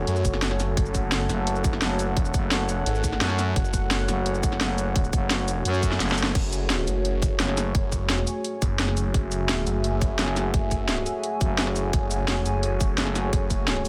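A moody analog pad and a nostalgic, lo-fi tape-like pad open this futuristic, tense slice of dark technical drum and bass, the analog pad's sustained chords and the tape pad's warbling texture pumping under sidechain and chorus while a growling FM bass rumbles beneath from the start. A swirling, saturated detuned saw bass with phaser joins at 0.1 seconds, alongside an up-front kit with a cracking snare, hi-hat, shaker and crash, and a tight, layered electronic kick. A drum fill at 6.0 seconds leads into a second drop, with the FM bass dropping out briefly before returning at 10.2 seconds, and the mix sits in light digital ambience.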